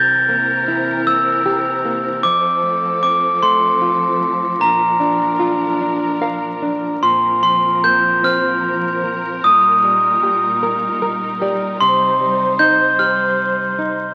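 This is a children's lullaby in 6/8, sleepy and tender, drifting at a slow, rubato 50 beats per minute in B-flat major, heard as a cut from a longer piece. A glockenspiel struck with brass mallets carries the melody up front, its metallic, bell-like tone bright and sparkling as it rings high in the register. Beneath it, a fingerpicked nylon-string guitar gives a warm, classical accompaniment and steps forward with short fills at 5.8 and 10.6 seconds. A rich studio string section sustains smooth, even bowed chords with gentle vibrato, moving from C7 through F and B-flat into a second half of Bbsus2, Eb over B-flat, and C minor. The whole recording sits in a modest small-room reverb and carries the crackle of a very old 78 rpm record, giving the lullaby a faded, antique charm.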